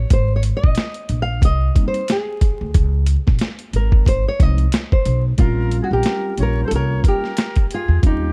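Nocturnal and smoky, this jazz-hop cut from a longer hip hop piece moves at 91 BPM in 4/4, with a light 16th-note swing in B♭ dorian. A dark, fingerpicked nylon-string guitar carries the melody and takes a solo over the opening bars, its finger squeaks audible over Abmaj9 and Dbmaj9 chords. Beneath it, a woody pizzicato upright bass and a gritty, compressed, pitched-down boom bap kit sit up front, the kit's thumpy kick and high-tuned snare driving the groove alongside the hi-hat. A mellow tine electric piano joins at 1.8 seconds with clean accompaniment heard through its built-in speakers. At 5.4 seconds the harmony shifts to Bbm69 and a breathy, reedy jazz flute enters as a second line, its crisp chiff and vibrato floating quietly in the background. The sound is dry and dusky, with vinyl crackle running through the whole recording.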